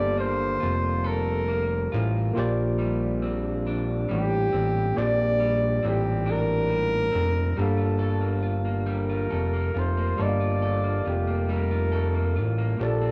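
R&B at a slow 46 beats per minute in a straight 6/8, this intimate, tender passage is cut from a longer piece and sits in a small room with light reverb. A mellow flugelhorn carries the melody up front between G4 and D5, its scooped notes sounding distant and roomy in a pop-style solo voice. Beneath it, a barky tine electric piano, bright and lightly overdriven through a combo amp, fills out the accompaniment, while a dark, slightly broken-up electric guitar adds a picked second line. A fat analog bass anchors the low end between F1 and Bb1, thick and saturated with a sawtooth bite, a filter pluck and a fast attack that sustains up front. The harmony moves from Gm9 to Bb69 at 2.4 seconds, and a new section returns to Gm9 at 7.6 seconds.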